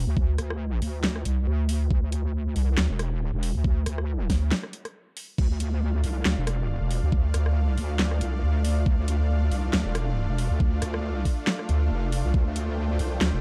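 A half-time 4/4 groove at 138 BPM with 55% swing on the sixteenths drives this chaotic, menacing heavy wobble dubstep in D minor. An overdriven, knocking electronic kick and an up-front dubstep kit of huge snare, metallic hi-hats, handclaps, rim clicks and crash cymbal anchor it, while a saturated, detuned square-and-sine wobble bass with chorus and overdrive wobbles between E1 and D2, with a break from 4.5 to 5.4 seconds. At 5.6 seconds a lush, bright supersaw pad enters with slow-attack sustained chords carrying 12-bit sampler grit and sidechain pumping, the mix sitting in a dark digital ambience.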